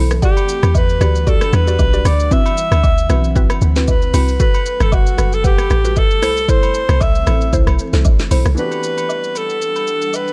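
This late-night, soulful amapiano cut opens on a full drop, with a glassy FM pad holding sustained chords in the background, a woody, mallet-like synth pluck stabbing through chorus, phaser and delay, and a deep, round log drum bass sitting up front. An electronic afro-pop kit with a deep kick, woody snare, metallic hats, rim click and shaker drives the 115 BPM groove in 4/4 with a light swing on the sixteenths. A breathy, whispered alto saxophone carries an intimate solo melody up front, touched with delay, while close, dry agogo bells, woodblock, egg shaker and group handclaps add detail underneath. The harmony in E minor moves through Em9, D13, Gmaj9 and C6. The pluck stops at 8.5 seconds, when a polished baby grand piano enters with clear accompaniment, and the log drum drops out at 8.6 seconds as the chords return to Em9. The production is dark and warm with very little room sound, and the passage is cut from a longer piece.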